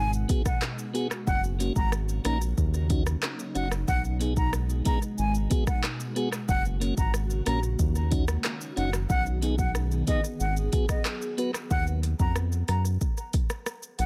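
A round, dark analog bass sits up front in this bouncy, hypnotic dancehall excerpt at 92 BPM in Eb minor, joined by an electronic drum kit with a deep kick, metallic hi-hats, handclaps, rim clicks and shaker. A breathy silver concert flute carries the expressive melody with vibrato and analog delay, over a piping tonewheel organ with key click and an ethereal, airy pad treated with chorus, phaser and sidechain pumping; the organ stops at 11.5 seconds and the pad at 11.7 seconds. The chords cycle through Abm7, Gb, Ebm7 and B6 before settling on Ebm for a short closing section, set in an echo-heavy digital ambience.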